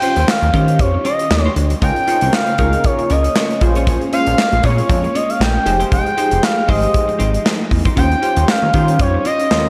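An expressive portamento lead synth carries the melody up front, its smooth, sawtooth voice gliding between Db5 and G5 with vibrato, chorus, slapback echo and tape echo over a slick early-eighties boogie funk groove at 117 BPM in 4/4, swung at 56% on the sixteenths. Beneath it, a chorused synth bass enters at 0.2 seconds, glossy and retro with a plucked, pulse-width-modulated tone that sits prominently in the mix. An up-front modern studio drum kit drives the danceable feel with a punchy kick, medium-tuned snare, hi-hat and handclaps, while a funky, detuned polysynth comps with filter-plucked chords dressed in chorus and slapback echo until 9.2 seconds. A dark, clean semi-hollow electric guitar picks a compressed riff in the background, and a very quiet phased string machine adds swirling, warbling sustained chords. The harmony moves through Eb13, Db6, Bbm7 and Fm9 before returning to Eb13, all set in a lush hall reverb that gives this short cut from a longer piece a big arena sound.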